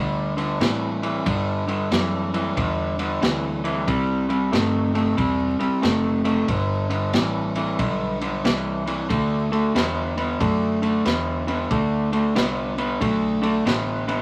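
Laid-back and swaggering, this electric blues shuffle at 92 BPM in G major swings easily in 4/4 and is cut from a longer piece, with a lo-fi riff from an electric guitar through a small old amp sitting up front, its dark, slightly broken-up picked tone moving from G5 through C and G to D. A foam-muted vintage fingered bass adds a round, punchy low end, and at 0.4 s a crunchy breakbeat kit joins with a tight kick, medium-tuned snare and dark ride cymbal, its gritty, saturated sound rolled off at the top. Moderate studio reverb and vinyl crackle give the recording a worn, intimate feel.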